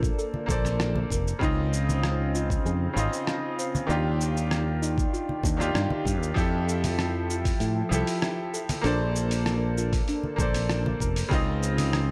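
A growly fretless electric bass sits up front in this relaxed, sunny sunset chillout excerpt at 97 BPM, moving under a bright concert grand piano with deep bass and digital delay as the chords pass from Bbmaj9 through Dbmaj9, Ebmaj9 and Fmaj9. A thick, warbling unison pad with chorus and a soft, round pluck playing arpeggios, touched with 12-bit sampler grit and delay, stay in the background. A dusty, overdriven soul sampler-style kit of hi-hat, rim click and shaker plays alongside a thumpy electronic kick and soft-handed congas, all within a dark, warm production and light reverb.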